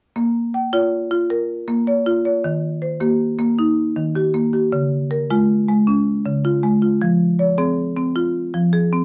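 Woody, bright marimba arpeggios played with medium hard mallets on padauk bars open this hypnotic, warm southern African traditional passage cut from a longer piece; they sit percussive and up front in a wet small room with dark, warm production from 0.2 to 9.0 seconds, moving at 105 BPM in a straight 12/8 through Bbm, Eb, Db and Fm in Bb equiheptatonic.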